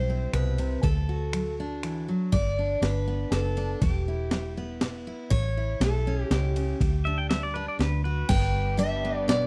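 A gritty, pitched-up, sampler-style drum kit sits up front in this short excerpt of sunny, heartfelt honky-tonk and classic country, its thumpy kick, medium-tuned snare, hi-hat, ride, crash and finger snaps carrying a straight 3/4 waltz at 120 BPM in G major, tuned to A4 = 436 Hz. Equally prominent, a dark, round, foam-muted vintage electric bass holds the low end through a progression that moves from C and D to G, Em, A7, Dsus4 and D before resolving home to G. Two picked steel-string dreadnought acoustic guitars share the middle: one carries the melody with a bright, full-bodied tone, audible finger squeak and a slapback echo, while the other, with fresh strings, plays the accompaniment. At 7.1 s a clean, compressed pedal steel guitar, played with fingerpicks and slide, adds a brief second line with volume swells. From 8.3 s a softer, warm studio string section enters with bowed sustained chords of reedy, gut-string, period-style ensemble tone and a smooth top. 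The sound is dry and close, in the manner of a 1970s studio recording.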